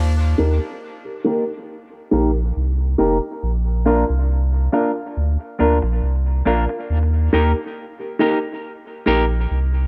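A round, deep sine sub bass opens this laid-back, hazy reggae fragment at 69 BPM in Eb major, joined at 0.4 s by a clean, scooped semi-hollow electric guitar and stabs from a mellow, woody, slightly detuned upright piano with audible action noise, both guitar and piano softened by a low-pass filter and trailing dub echo, as a filter sweep runs through the whole passage over a simple Eb to Bb and back to Eb progression in a small, lightly reverberant room.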